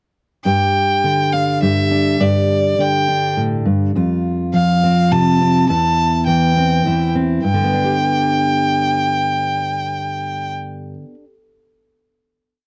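In a waltz-time 3/4 at 103 BPM, this short, nostalgic and hopeful indie folk piece in G mixolydian sets a rich, focused fiddle with light vibrato, carrying arch-shaped motifs up front from 0.4 s, over a fingerpicked steel-string acoustic guitar with an alternating thumb and audible finger squeak, moving from G5 through F and C/E before settling on a final G chord at 7.4 s, all captured close and dry in a 1970s-style studio with light reverb.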